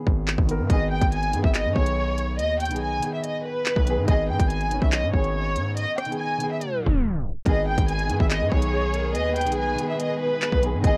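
Hard-clipped kicks, a sharp snare, crisp hats, handclaps and rim clicks from an up-front drill kit drive this cold, tense half-time drill excerpt at 142 BPM in G# harmonic minor, where a heavy, saturated 808-style bass and a mellow, dark grand piano support an expressive, vibrato-rich violin section melody, a tape stop and a very quiet reverse cymbal lead into a lush string section in the background from 7.5 seconds, and a gliding, chorused portamento lead with tape echo adds a second line from 8.7 seconds, the mix carrying the worn, warbling drift of old cassette tape in a small room.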